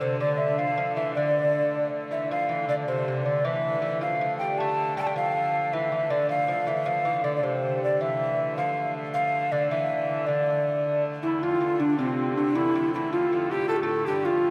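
Rolling in a straight 6/8 at 105 dotted-quarter beats per minute, this medieval dance in D minor feels driving and mysterious, and it is cut from a longer piece. A hollow, airy tenor recorder carries the melody up front, its tongued notes showing a woody chiff and a touch of vibrato. Beneath it, a delicate fingerpicked lute with double strings plays a second line in the low register, while a biting, earthy hurdy-gurdy holds a steady drone with its wheel-bowed tone. At 11.2 seconds a clear flugelhorn with light vibrato joins as another second line, adding a vintage brass colour for the closing stretch. The whole performance sits in the long, wet reverb of a church or concert hall, giving the dance a cavernous atmosphere.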